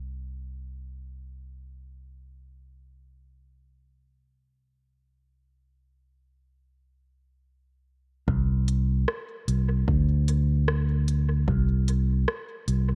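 A growly, up-front fingered electric bass holds the low end alone through the hazy, deep opening of this ambient dub excerpt before an overdriven electronic kick drum arrives at 8.3 seconds and an overdriven electronic kit of smooth hi-hats and rim clicks with dub echo joins at 8.7 seconds, all set in a dark digital ambience.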